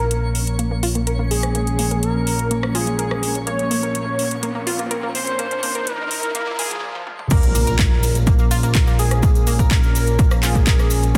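A dense, heavily limited modern master with light reverb carries this progressive house excerpt at 125 BPM in Bb minor, expansive and driving, where a thick, detuned unison lead with vibrato and dub echo sings over a pumping analog pad, a decaying, chorused pluck arpeggio with its own dub echo, a fat sawtooth bass holding Bb1, and a twinkling granular texture with shimmer. A house drum kit with metallic hats and overdrive, plus a background riser, builds under filter sweeps on the pluck and pad until a break at 6.8 seconds and a drum fill at 7.1 seconds. At 7.3 seconds the drop lands with an impact, a punchy, overdriven kick up front, and a grainy, distant cabasa.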